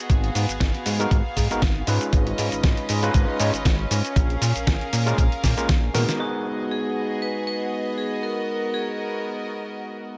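A thumpy, gritty electronic kick sits up front in this groovy, sensual nu-disco excerpt at 118 BPM in G# dorian, joined by a dusty soul sampler-style kit with a fat, low-pass-filtered snare, hats and shaker, plus a glossy, chorused retro synth bass. Floating, sul tasto symphonic strings hold sustained chords with sidechain pumping throughout, while a barky, overdriven tine electric piano played through a combo amp enters at 1.0 seconds with delay and pumping over chords moving from G#m7 through C#9/G# to A#m7. Around a drum fill at 5.9 seconds, the bass and drums drop out, and a ringing, hard-mallet vibraphone carries a delayed melody over the strings and electric piano from 6.2 seconds, all in a dry sound.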